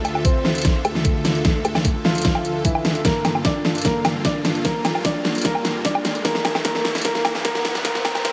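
A clear, boxy baby grand piano carries the melody through a lush hall reverb in this menacing, chaotic heavy wobble dubstep excerpt at 150 BPM in half-time, over detuned supersaw chords pumping in the background, an overdriven dubstep kit with a huge snare, bright hats and woodblock, a knocking electronic kick from 0.2 seconds, and a riser entering at 4.8 seconds as a build-up with a drum fill and filter sweep moves from Dmadd9 to Gm7.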